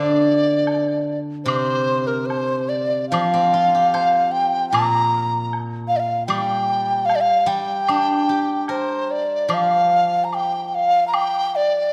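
A large dizi carries the melody up front, its bamboo tone breathy and mellow, with a buzzing membrane, vibrato, soft attacks, rolled-off highs and an unsteady quality. Beneath it a steel-string zither, also up front, accompanies with a ringing, silvery fingerpicked sound across a broad range. A bright woodblock enters at 0.7 s and stays in the background, heard with the air of a live room. The piece is Chinese traditional chamber music in the G yu mode, tender and graceful, moving in 2/4 at 75 BPM with a rubato feel. A moderate recital hall reverb surrounds the ensemble, and a new section begins at 9.5 s in this excerpt cut from a longer work.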